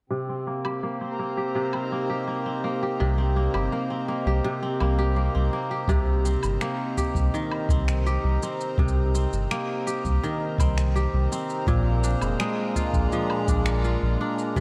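Soaked in a lush hall reverb, this dreamy excerpt of delicate, wistful folktronica in C minor moves at a straight 83 BPM: a reedy, breathing harmonium holds sustained chords beneath up-front, crisp fingerpicked kora arpeggios that carry analog delay throughout and a filter sweep through the first 5.9 seconds, while produced electronic woodblock, shaker and finger snaps tick along. A round, deep analog bass enters at 3.0 seconds, a boomy, brushed kick drum joins in the background at 5.9 seconds, and the harmony later shifts from Cm7 to Bb7 at 11.7 seconds.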